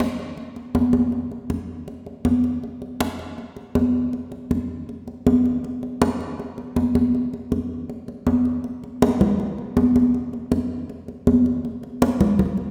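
Congas, warm and high-tuned with a thick-skinned, soft-handed touch, sit close and up front in this sunny, lively jazz piece at 160 BPM in a straight 4/4, cut from a longer work and set in a church-like hall whose reverb trails for 2.0 seconds, with the opening section giving way to a new one at 8.6 seconds.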